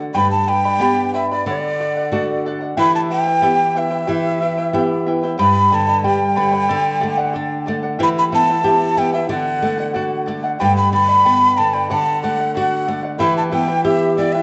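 Fingerpicked charango with its shimmering double strings and a bright, up-front flamenco guitar with audible finger squeak open this earthy, melancholic Andean folk excerpt at 92 BPM in E minor, moving through G, D and E minor in a straight 2/4. A breathy cane quena enters at 0.1 seconds to carry the melody up front, its soft attack and vibrato set over the strings. The ensemble sits in a recital hall reverb with a dark, warm production.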